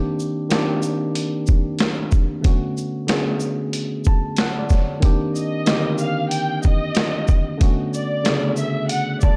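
Dark, moody boom-bap hip-hop excerpt in a dark, warm digital ambience, where a worn, slightly out-of-tune tine electric piano, lightly overdriven through a combo amp, sits up front on Cm7 and Bm7 chords beside a gritty, compressed, pitched-down sampler-style kit of thumpy kick, high-tuned snare, hi-hat and shaker, swung on the 16ths and re-recorded in a large room, until a lush, bowed studio violin section with soft attack, vibrato and portamento enters at 5.4 s, its smooth top trailed by tape echo.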